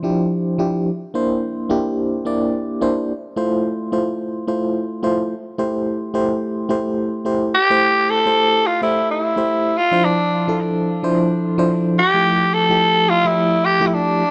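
A swung sixteenth-note groove carries this bouncy, confident R&B fragment, where a mellow FM electric piano with tremolo and a noise layer plays Dm9, C9, Fmaj7 and Am7 voicings alone until a raspy, punchy tenor saxophone with tape echo takes the melody at 7.5 seconds, both sitting up front in a moderate plate reverb.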